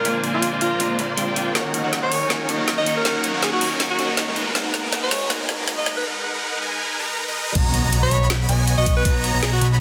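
Swung sixteenths over a half-time 160 BPM pulse drive this bright, playful future bass clip in B major, tuned slightly flat at A4 = 436 Hz, where a jazzy alto saxophone with vibrato and scooped notes carries the melody over a clean, picked electric guitar, a shimmering, granular ambient pad and huge, detuned supersaw chords with phaser, all pumping along with a fat, detuned analog bass. A front-and-center trap kit with a woody snare and metallic hats plays a fill from 1.6 s while filter sweeps and a very quiet riser build tension through A#7, D#m7 and G#m7 chords. At 7.6 s the drop lands on Bmaj7 with an impact, a knocking electronic kick and an airy, dreamy arpeggiated lead, all washed in a lush hall reverb and a dense, heavily limited master.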